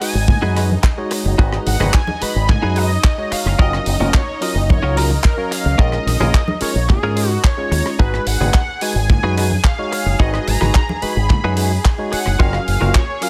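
Sleek and groovy, this nu-disco excerpt moves at 109 BPM in a straight 4/4 in G# dorian, cycling through G#m7, F#maj7 and A#m7. A thick, detuned unison lead carries the melody with analog chorus and tape echo over bright tine electric piano with phaser and sidechain pumping, while a rich, biting string section holds sustained chords in the background, pumping as well. Underneath, a punchy envelope-filtered fingered bass sits up front beside a tight, dry kick, with a damped 70s kit of handclaps, hi-hat and rim click, ringing congas and a twangy, compressed clean guitar riff tucked behind.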